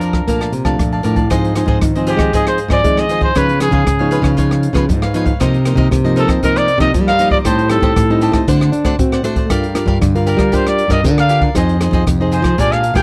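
A straight 4/4 groove drives this joyful, festive samba and choro passage, cut from a longer piece, with an open jazz drum kit setting an airy, polished pulse of hi-hat, rim click and a boomy kick up front. A clear, vintage trumpet sings the jazz-style solo melody over a fingerpicked classical nylon-string guitar, a second nylon-string guitar holding down the bass, and a crisp, bright picked cavaquinho, moving through chords such as Bbmaj7, Db9, Am7b5 and D7. The trumpet carries a slapback echo, while the whole ensemble is captured in a dry, close 1970s-style studio sound.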